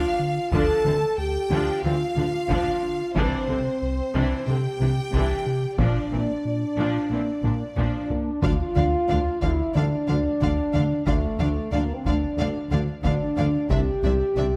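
A mellow, roomy French horn section sits up front, holding sustained chords through this relentless, vast cinematic cue, a hybrid orchestral and electronic film score in D minor at 91 BPM in a straight 4/4. Beneath it, a smooth synth bass built from sawtooth and square waves with ring modulation plays a riff with a fast attack. From 0.5 seconds, a close, dry taiko ensemble struck with hard sticks drives the pulse, alongside a dark, woody cello section in the background and a very quiet double bass section with a soft attack. A rich viola section carries the accompaniment and a clear, focused violin section adds a second line, both bowed with vibrato, as the harmony moves through Dm, Cadd9 and Bb. After a taiko fill at 7.4 seconds, a lush violin section takes up the melody at 8.4 seconds, joined by a close-miked tuba in the background. A moderate scoring stage reverb gives the orchestra its sense of space, and the passage is cut from a longer piece.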